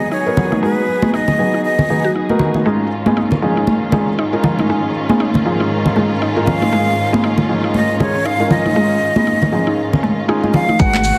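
Spiritual and hypnotic, this afro house passage at 118 BPM, cut from a longer piece, rests on a distant bowed string section with vibrato and portamento, filtered and pumping, while a woody, chorused synth pluck arpeggiates in the background, a felt-muted upright piano with audible action noise adds soft stabs, and bright, high-tuned congas drive the swung groove over G#m7 and C#add9/G#. An up-front, breathy jazz flute carries the melody with dub echo, sounding from 0.0 to 2.1 seconds and returning at 6.5 seconds. At 10.8 seconds a round sine sub bass, an overdriven electronic kick, an afro-pop kit with handclaps, metallic hi-hats and toms, and grainy maracas arrive briefly, all within a moderate room reverb and a heavily compressed, radio-like sound.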